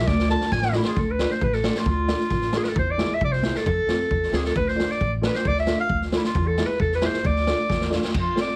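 A clear, up-front clarinet carries a festive yet bittersweet klezmer melody in 2/4, entering alongside a woody pizzicato upright bass, while a street-band drum kit with a boomy kick and medium-tuned snare opens with a fill at 0.1 seconds. A dark, mellow upright piano joins at 0.3 seconds with long-sustained accompaniment as the harmony moves among D minor, E and F, and the drums fill again at 7.7 seconds. Light reverb sits over a heavily compressed, radio-like sound in this short cut from a longer piece.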